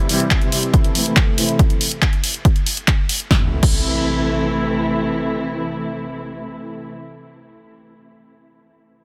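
Uplifting trance at 140 BPM in A minor, bittersweet and driving, this excerpt lays veiled, muted strings playing lush sustained chords over C and Am, pumping with the beat and put through a filter sweep in the first 1.6 seconds, while an up-front electronic kick joins a punchy, overdriven analog drum machine with crash, handclaps, hi-hat and snare, both running until 3.8 seconds, and an electronic impact enters at 3.4 seconds beneath the strings in a dry, dense, heavily limited master.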